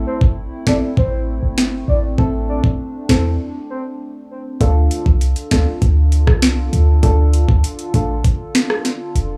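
A knocking electronic drum kit sits up front in this sultry, hypnotic dancehall cut, its overdriven kick, sharp snare, metallic hats, finger snaps and rim clicks roughened by a gritty small-room re-recording. Beneath it, a clean 808-style bass with a boomy, sine-like tone hits with a fast attack and decays into dark low end, sharing the forefront with the drums. A deep, mellow chord stab with a filter sweep and chorus pumps against the beat until 8.1 seconds, while a hollow, flute-like pad with a nasal edge sustains chords underneath, also pumping. Over the opening, a round, octave-layered synth lead with a sub octave, detuned tone, vibrato, phaser and analog delay carries a brief melody until 3.8 seconds, reaching into the start of a short break. The harmony moves from A minor to D minor at 4.6 seconds, and the dry mix keeps everything close and intimate in this fragment of a longer piece.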